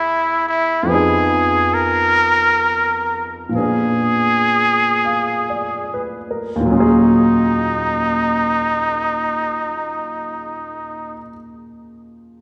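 A jazz ballad in Eb minor at a very slow 35-50 BPM with a swung 4/4 feel, this intimate, smoky fragment of a longer piece puts a bright, nasal straight-muted trumpet with vibrato up front on the solo melody until 11.2 seconds, over a natural-sounding baby grand piano with short sustain, the tempo slowing through the first 6.7 seconds as the harmony moves from Emaj9 through Fm7b5 and Bb7b9 to Ebm11, all set in the lush reverb of a church or concert hall.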